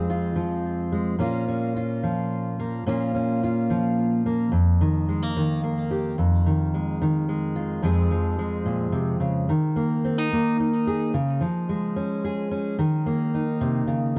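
Folk in 6/8 at 72 beats per minute, this wistful, yearning excerpt from a longer piece features a lone fingerpicked steel-string acoustic guitar, full-bodied and up front, with the jumbo body's resonance coloured by tape echo and set in light reverb. The guitar spans F2 to Ab4 and moves from F minor through Bb minor, Eb over F and Fm7 before settling on Db and Eb5 near the close at 12.8 seconds. Tuned slightly below standard pitch, its voice carries a gently aching quality throughout.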